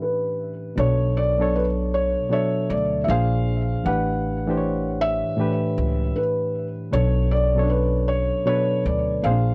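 A dry, gritty recording with a low-pass filter and light reverb sets a hazy tone for this short melancholic, reflective hip hop fragment cut from a longer piece, moving at 78 BPM in 4/4 with a 65% swing on the sixteenths in B minor. A felt-muted upright piano carries the melody in a narrow B4 to F#5 range, its thick felt giving a soft, dark, intimate sound with audible action noise, further filtered and touched by tape echo. Beside it, a reedy, bright electric piano plays the accompaniment through its built-in speakers, clean in character but colored by cassette tape and a low-pass filter. Both keyboards sound from 0.0 seconds, and a pizzicato upright bass on gut strings enters at 0.8 seconds, woody and thumpy, with transformer saturation adding grit to its low register. All three parts sit up front, while the harmony drifts from A9sus4 to Bm9, passes through A#9 and A9sus4, and settles back to Bm9 at 6.9 seconds.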